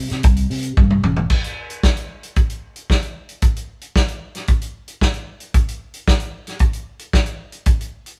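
Light reverb gives this short disco fragment the feel of a band playing live together in one room. The mood is sultry and danceable, in a straight four-four feel. A fingered electric bass with a bright, growly, amped tone opens the clip but stops at 1.2 seconds. An acoustic soul drum kit enters at 0.1 seconds and sits up front, its mid-forward sound shaped by a tight booth, a medium-tuned snare, a snug kick and a rolled-off top, with crash cymbal, hi-hat and toms also in play. A drum fill from 0.8 to 1.3 seconds marks the move into the longer second stretch, where the kit carries on alone until the clip ends at 8.2 seconds.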